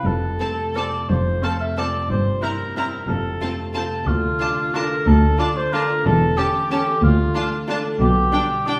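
A classical orchestral ballroom waltz in F major, this elegant, festive passage moves in 3/4 at a lilting 166-199 BPM with a rubato feel, cut from a longer piece. A mellow, up-front cor anglais carries a second line with light vibrato and a distant, roomy quality, while a ringing concert harp spins fingerpicked arpeggios beneath it from the first moment. Just after, at 0.1 seconds, a lush cello section and a double bass section anchor the bass with rich, focused bowing, and at 0.4 seconds the violins arrive: a clear chamber section takes the high melody with a smooth top, a second, more expressive violin section adds a close inner line in the background, and a warm, even viola section fills out the accompaniment from a distance. The harmony drifts from F through C7/G and Dm to A7/E before settling on G/B near 8.0 seconds. The ensemble is heard from further back in a wet stone room whose reverb lends the ballroom sweep a spacious glow.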